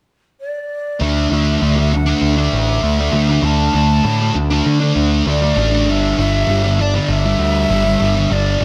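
Light studio reverb gives this hazy, dreamy rock excerpt a soft sheen, with a breathy, hollow jazz flute carrying the melody from a distance, its slapback echo trailing behind it from 0.4 seconds. At 1.0 seconds a thick, double-tracked fuzz guitar drenched in distortion and analog chorus lands up front with a riff. Alongside it comes a growling, overdriven picked bass, the pair moving from Dsus2 to G5 at 5.9 seconds.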